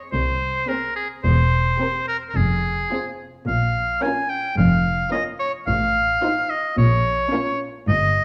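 Quirky and mischievous, this short cinematic cue, cut from a longer piece, has a playful, whimsical air as it moves at 108 BPM in a straight 4/4, set in F minor. A bright, present oboe sits up front with light vibrato, singing a second line between Ab4 and Ab5 from the opening moment to 8.2 seconds. Beneath it, bowed cello and double bass sections carry the bass with expressive vibrato, the cellos lush and sliding with portamento in the background, the basses reaching down to E1 from a distance. At 0.7 seconds a distant, soft-attacked violin section enters with a melody and a second line with portamento, joined by a smooth, even viola section filling in the accompaniment until 7.7 seconds. The harmony moves from a rootless F minor through C7 over E, back to F minor, then to Bb minor and F7 over A before settling on Bb minor, all wrapped in a moderate recital hall reverb and a dark production.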